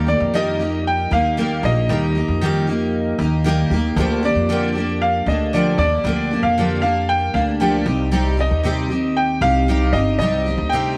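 A straight 4/4 pulse at 116 BPM carries this carefree, heartfelt acoustic pop piece in Eb major, tuned to A4 = 441 Hz and cut from a longer work. A double-tracked, full-bodied picked steel-string guitar and a growly, woody pizzicato upright bass set up the accompaniment from the start, and a clear, polished upright piano enters at 0.1 s to carry a high melody with long sustain. Every part sits up front, bathed in a moderate plate reverb, as the chords move from Eb to Gm7/D at 4.0 s and to Cm at 7.9 s.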